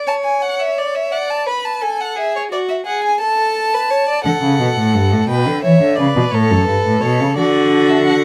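A cello sounds warm and expressive, entering at 4.2 seconds beneath the upper voices with vibrato and portamento, heard distant yet up front as it carries the bass line. This short cut from a longer classical piece is a stately, elegant baroque-style fugue for string quartet in D major, moving at 58 BPM in a straight 6/8. Two bowed violins open it almost together, one on a focused second line in the middle register and the other carrying the melody higher up with a smooth, even tone, both rich with vibrato and placed up front. The harmony moves from A/C# through D and E, pauses at 3.2 seconds where the chords drop out, and then moves through D, G/B and A before arriving on D. Light reverb gives the ensemble a gentle sense of space.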